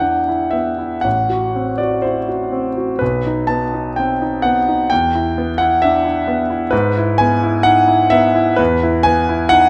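A clear concert grand piano opens this short excerpt of a romantic classical character piece in E minor, played solo with supple rubato at 58-68 BPM in 2/4. The mood is hopeful and warm, with the piano sitting up front and intimate, its deep bass, polished tone and audible action noise all present, carried by a moderate large-studio reverb that lingers about 1.3 seconds. Harmonies pass from E5 through F#dim/A and B, then back to E5, touch E/G# at 6.7 seconds, and return to E5 at 8.6 seconds.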